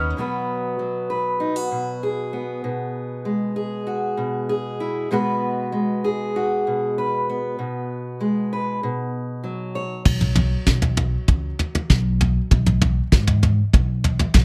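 Dry and close, this hopeful indie folk excerpt opens with a brief note from the upright bass before a bright, up-front fingerpicked steel-string acoustic guitar with audible finger squeak takes over, until at 10.1 seconds the dark, woody pizzicato upright bass returns and a soft brushed drum kit with a fat snare and tight kick joins for a build-up and drum fill, while the guitar drops out at 12.5 seconds.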